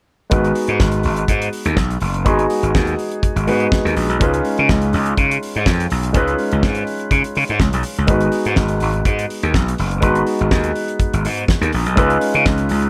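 A straight 4/4 disco groove with a glamorous, sultry mood runs through this dry, close-sounding clip cut from a longer piece, as a damped 70s acoustic drum kit with a fat snare and tight kick, a growly, punchy overdriven slap bass and a natural, deep-toned concert grand piano all play from start to finish over a G#m7 to C#9 progression.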